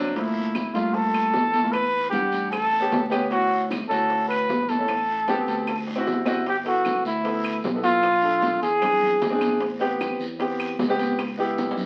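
A lively, sophisticated Afro-Cuban jazz groove moves at 152 BPM in a straight 4/4, opening in D major before shifting to G major at 6.5 seconds, with a drum fill bridging the change and another near the close. Up front, a vibrato-laden trumpet carries the solo melody in a jazz style from 0.2 to 9.4 seconds, its tone mellow and present. A natural-sounding grand piano sits close beside it, accompanying through rich harmony that runs from Gm7 and Dmaj9 to G6, Eaug7 and Am9. Underneath, a growly, direct fingered electric bass anchors the low end, while a percussion bed fills out the rhythm: bright, high-tuned congas set back in a large room, round low-tuned bongos and ringing metal-shell timbales both very quiet, woody claves in the background and a raspy guiro. The whole fragment, cut from a longer piece, is bathed in a wet studio reverb and carries the crackle of a very old 78 rpm record, lending it a vintage patina.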